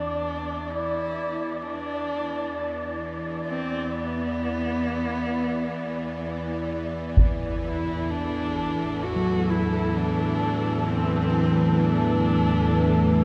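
A horsehead fiddle's husky, focused bowing with vibrato and portamento fades in over a tense, sawtooth-edged drone and an airy, breathy wind texture in this ominous, cavernous dark ambient excerpt in free time, tuned to A4 = 437 Hz, where the harmony shifts from E5 to Bm7/E as a close, dry taiko hit lands at 7.2 s, a deep, moody analog pad with chorus enters at 8.1 s, and a pure, ringing quartz singing bowl with slow beating plays arpeggios in the background from 9.2 s, all within a cathedral reverb that rings for 5.8 seconds.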